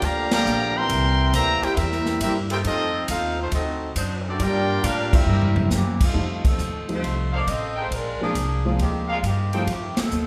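A clear, up-front trumpet section carries the melody of this brassy, swinging 137 BPM big band excerpt, over a dark trombone second line, faint sustained saxophone chords, woody pizzicato upright bass and a big-band drum kit with a punchy kick and dark cymbals; at 5.7 s the distant saxophone section takes over the tune, a natural-sounding baby grand piano joins from 6.1 s as the harmony moves into F mixolydian, and a vintage trumpet section adds soft-attack stabs, with a reverberant recital hall surrounding the band.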